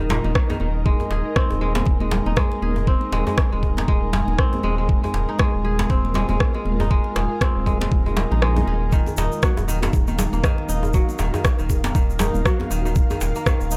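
Afro house at 119 BPM in 4/4 with a 16th-note swing, this excerpt feels spiritual and driving. An ethereal, detuned sawtooth pad with a sub octave and slow attack holds sustained chords under ensemble chorus and built-in reverb, while a crisp, ringing fingerpicked kora spins arpeggios through an analog delay. A round, deep analog bass sits up front, and the pad, kora and bass all pump against the sidechain. A knocking electronic kick, re-recorded in a large room, leads the groove alongside an electronic rim click, with high-tuned congas in the background and a tight, cracking djembe with metal rattles struck by hard hands. At 8.1 seconds an electronic swell enters in the background, and the kick briefly drops out shortly after. At 8.9 seconds a grainy, bright tube shaker joins while the harmony moves from Absus2/Eb to Ebmadd9. The overall sound is dry and gritty, with transformer saturation.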